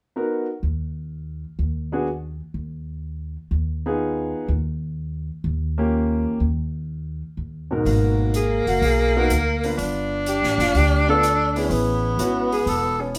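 Swinging in 4/4 at 125 BPM, this cool, smoky small-group jazz piece in G# dorian opens with clear, long-sustaining grand piano accompaniment over woody pizzicato upright bass, until at 7.9 seconds an airy big-band drum kit on hi-hat and snare arrives with a soft-attacked, up-front tenor saxophone on a second line, and from 8.4 seconds a smooth-topped alto saxophone carries the melody with vibrato and scooped notes, the group heard from further back in a wet studio reverb.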